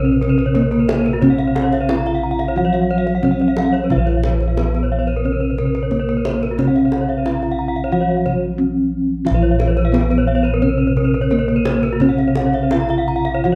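A dark, warm production sits in a moderate recital-hall reverb, giving this short cut from a longer Balinese gamelan piece a shimmering, ceremonial glow. Bronze metallophones carry the melody and a lower accompaniment, struck with padded disc mallets for a soft, ringing tone. Their paired tuning produces beating shimmer, and the accompaniment has a vintage, band-limited colour. Two more metallophones spin arpeggios higher up with horn mallets: one bright, the other boxy as if in a small room. Bossed gongs supply a round, airy bass that sits up front. Kendang drums, tight and distant with hard hands, play from 0.2 to 13.3 seconds, while the rest of the ensemble holds a steady, straight pulse throughout.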